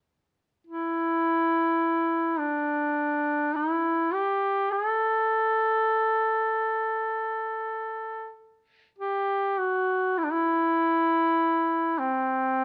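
Caucasian folk lament in free time and A dorian, tuned to A4 = 442 Hz, with a solemn, longing mood. A lone duduk carries the piece from 0.7 s to 12.6 s, its warm, vintage tone and scooped notes sitting up front between C4 and A4 in a folk style, with a new section beginning at 9.6 s. Close, detailed microphones and light reverb frame this short cut from a longer performance.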